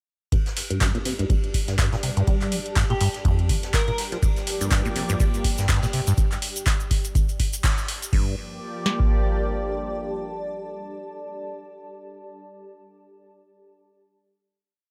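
A squelchy, resonant acid bass line with accents and slides sits up front through a filter sweep in this trippy, driving acid house piece. It rides a booming analog drum machine with a deep four-on-the-floor kick, crisp snare, claps, crash and metallic hats, both drum-machine parts carrying a tape-warm tone. A looped jazz brush kit breakbeat with dark cymbals sits in the background, a grainy hand-played shaker and a blurred, evolving granular cloud pad add texture, and an airy, dreamy lead slips in short phrases around 2.9 seconds. A lush, detuned unison pad with 12-bit sampler grit enters at 4.5 seconds, and the groove gives way at 8.1 seconds to a final sustained chord.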